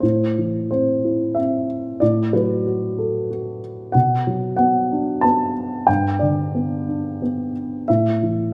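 A dark baby grand piano carries this brief classical fragment alone, its mellow, intimate tone sitting up front with audible action noise and short sustain, spanning G2 to A5. The playing is lyrical and rubato in 3/4 around 92 BPM, moving through A dorian harmony from Am to Bm and G before settling on an open A5 at 7.9 seconds. A moderate scoring-stage reverb gives the brooding, cool mood some air across its 8.5 seconds, cut from a longer piece.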